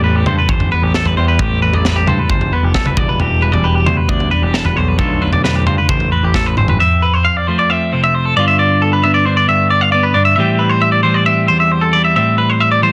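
Moving in a straight 4/4 at 134 BPM in A minor, this intricate, wistful math rock and midwest emo piece, cut from a longer work, opens with a bright, twangy, compressed electric guitar picking high arpeggios over a dark, clean electric guitar accompaniment colored by vibrato and plate reverb, while an overdriven, growly picked bass and a punchy acoustic kit with a high-tuned snare and rolled-off top drive the first part through chords like Am9, Em7 and Bm7b5. A drum fill at 6.3 seconds closes that passage, and at 6.8 seconds the bass and drums stop, leaving the two guitars alone to ring through Fmaj7, G7 and Am7. The dense, heavily limited modern master keeps the guitars and drums up front in a light reverb.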